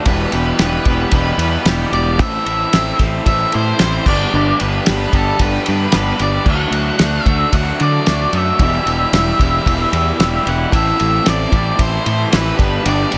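A cloth-damped, thuddy acoustic drum kit sits up front with a fat snare, tight kick and dark cymbals, driving this upbeat yet wistful indie rock clip in a straight 4/4. A growly, fuzz-soaked fingered electric bass, also up front, joins a bright, double-tracked overdriven garage guitar riff colored by spring reverb, while a shadowy octave-fuzz lead guitar sings a melody through digital delay. Over light reverb, the band cycles through Em, Am, G and D until the cut at 13.2 seconds.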